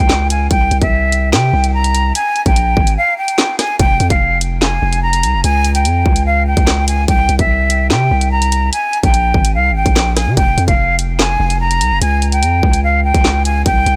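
Ominous and cold, this half-time drill hip hop excerpt sets an airy, distant jazz flute melody with vibrato and tape echo over a deep, decaying sine 808-style bass and an electronic drill kit of hard-clipped kick, woody snare, bright hi-hats, handclaps and rim clicks, with the kick dropping out from 3.0 to 3.8 seconds inside a digital ambience.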